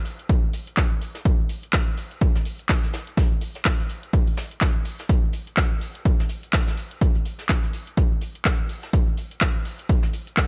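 A feel-good, uplifting house cut at 125 BPM in 4/4 with swung 16ths opens with a soft acoustic brush kit in the background, its medium-tuned, high-passed snare and sidechain-pumped, high-passed hi-hats set in a small room. A layered, tape-warm house kit of handclaps, hi-hat and shaker enters a moment later, up front with studio reverb. A punchy analog electronic kick, re-recorded in a large room and set up front with studio reverb, follows shortly after to drive the groove, all within a largely dry mix.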